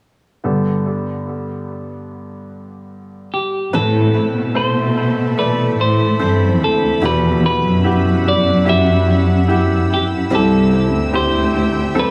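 The recording is steeped in tape echo and light studio reverb, with a small room ambience around the players. This tender, hopeful pop ballad in G major moves at a slow 73 BPM in straight 4/4, tuned slightly low at A4 = 436 Hz. A clear, polished baby grand piano opens alone at 0.4 seconds, sitting up front on a Gadd9 chord. A bright, twangy clean electric guitar takes the melody from 3.3 seconds. At 3.7 seconds a bowed cello section arrives as the bass, warm and expressive with vibrato and portamento, while a full-bodied steel-string acoustic guitar picks arpeggios in the background, finger squeaks audible. Soon after, a lush, thick, detuned sawtooth pad with chorus sustains slow-blooming chords through Amadd9, Emadd9 and C as this fragment of a longer piece closes.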